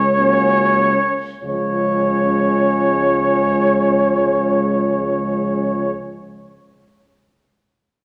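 A mellow cornet with vibrato sings the melody up front in this warm, lyrical classical hymn for brass band in Db major, a rubato 50 BPM passage that slows through its first 1.4 seconds, as a tuba with light vibrato holds the bass, a soft-attacked French horn section adds a second line from 0.2 seconds, and a clear trombone in the background and a very quiet, close-miked euphonium supply the accompaniment inside a wet recital hall reverb.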